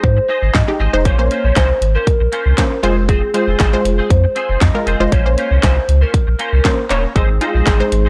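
Dance-pop in Bb minor at 118 BPM, confident yet bittersweet, this short excerpt from a longer piece sets a hollow, woody clarinet-like synth lead with chorus, phaser and vibrato over a lush, detuned sawtooth unison pluck and a deep, round sub bass that both pump with sidechain, while a clean, twangy electric guitar riff with ensemble chorus sits behind punchy electronic drums with fat snare, handclaps and hi-hat, all moving through Ab, Bbmadd9 and Fm in a dry, gritty cassette-tinged sound.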